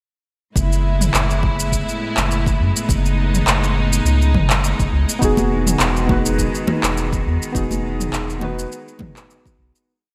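A swung 16th-note groove at 103 BPM in 4/4 sets up a relaxed, wistful sunset chillout piece in F# dorian, opening at 0.6 seconds with a light, overdriven deep house kit of handclaps, shaker and low toms up front, carrying studio and gated reverb. A soft electronic kick, also overdriven and reverb-touched, sits in the background, while a round, deep analog bass plays a syncopated riff prominently. A clear, earthy string section holds sustained chords with light vibrato and a biting edge beneath an F#m11 harmony. At 5.2 seconds the chord moves to Emaj7 as mellow, detuned electric-piano-like synth keys enter with chorus and delay, playing rootless held chords with syncopated pushes, and ringing, close-miked congas join soon after. The light reverb and bright 1980s-style digital sheen frame the short piece, which fades out from 6.8 seconds.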